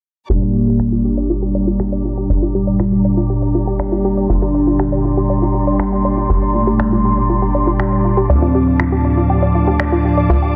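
Cinematic and hypnotic, this melodic techno excerpt moves at 120 BPM in G minor. A tight, punchy sequencer bass with tube saturation drives beneath bold, brassy analog synth stabs, lush detuned unison pluck arpeggios with delay, and smooth bowed studio strings holding sustained chords. A round, dark octave-layered synth lead carries the melody through chorus, phaser and digital delay, and electronic finger snaps join at 0.8 s. Filter sweeps run across the pluck, lead and drums within a moderate hall reverb and a dense, heavily limited master, as the harmony shifts from Gm to Dm at 8.3 s.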